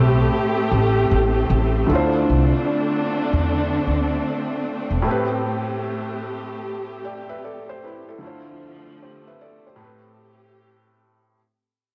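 A swung 76 BPM lo-fi hip hop groove in A minor sets a reflective, melancholic mood, with a woody, thumpy pizzicato upright bass up front until 5.0 s, a felt-muted upright piano with audible action noise and lush, bowed strings with vibrato and portamento, both carrying cassette tape colour, drifting between Am7 and Dm7 through a break from 5.1 s as the whole fragment fades out.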